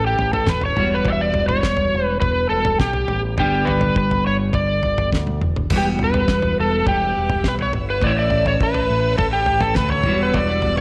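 A straight 4/4 groove at 103 BPM drives this trippy, dark psychedelic rock excerpt in E dorian, built on A, Emadd9 and G chords. A dry, damped 70s drum kit with a fat snare and tight kick enters at 0.2 seconds and plays a fill at 5.1 seconds, while an up-front overdriven slide guitar carries a bright melody with slapback echo over a clean, picked electric guitar riff colored by phaser and a growling fingered bass with overdrive. At 5.7 seconds a swirling, vintage string machine slips in behind with slow-attack sawtooth chords thickened by ensemble chorus and phaser, all set in light studio reverb.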